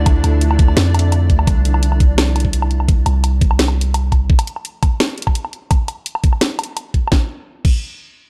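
A deep, sine-toned 808-style bass sits up front from the start, holding long decaying notes under a filter sweep until about 4.3 seconds. This short cut from a longer half-time drum and bass piece feels dark and spacious, set in a digital ambience with a warm production. For the first 1.5 seconds a nasal, string-like drone holds a D minor chord, its sawtooth body carrying vibrato, 12-bit sampler grit and sidechain pumping. A reversed, detuned texture with a dreamy, granular shimmer drifts above it, and then the harmony drops away. From 0.1 seconds a layered electronic kit plays up front, pairing a knocking kick with a cracking snare, hi-hat, crash cymbal and woodblock in studio reverb, and it continues to 7.8 seconds.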